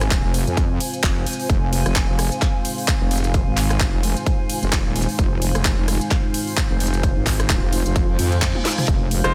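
Bass house at 130 BPM in F minor with a 16th-note swing, gritty and swaggering, built on an up-front wobble bass with overdrive, chorus and sidechain pumping, a punchy, tape-warm kick and a garage kit of cracking snare, crisp hats, claps, ride, rim clicks and toms. A moody square-and-saw analog pad sits in the background alongside a blurred, evolving granular cloud pad with its own reverb, both pumping against the kick, while the mix overall stays dry. A reverse cymbal rises at 8.2 seconds into a drum fill, and a brilliant grand piano stab with audible action noise lands at 9.2 seconds as this cut from a longer piece closes.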